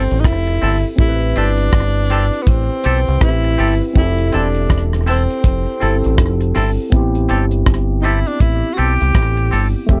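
A dry, close recording in a 1970s studio style frames this short lovers rock reggae cut, bittersweet and full of longing, with a swung sixteenth-note feel over Fmaj7 and Am7. Up front sit a cloth-damped, thuddy drum kit with a tight kick, hi-hat and rim click, and a deep, round dub bass played with the fingers, while a clean tine electric piano carries lush chorus and slapback echo and a twangy, bright electric guitar adds stabs colored by tremolo. Over them a breathy tenor saxophone sings the melody in an intimate pop style, with soft, scooped, whispered notes, vibrato and tape echo, falling silent at 9.5 seconds.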